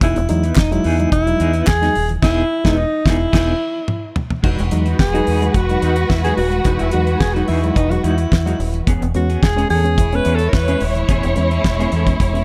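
Glamorous and celebratory, this disco excerpt moves at 108 BPM in E major, with a breathy, scooped alto saxophone carrying the melody up front over a damped 70s drum kit with a fat snare and tight kick, a round, deep dub fingered bass, a reedy, worn electric piano with fast tremolo, and a clean semi-hollow guitar with tremolo tucked in the background. A crisp group handclap sounds briefly from 0.6 to 1.8 seconds, and the band hits accents before a drum fill leads into the saxophone solo at 4.4 seconds, where a lush studio string section with vibrato and portamento joins as a second line. The chords move from Eadd9 to Emaj9 and then Amaj9, all in a dry sound with little reverb.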